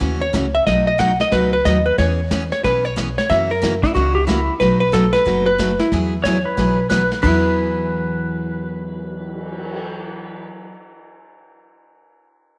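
Swinging and cheerful, this western swing excerpt puts a dark, clean hollow-body jazz guitar melody with slapback echo up front over a bright, full-bodied picked steel-string acoustic guitar, a woody, thumpy pizzicato upright bass and a smooth vintage brush kit with dark cymbals, while a compressed pedal steel guitar with fingerpicked slide and volume swells enters at 3.8 s as a second line, all set in a moderate echo chamber reverb.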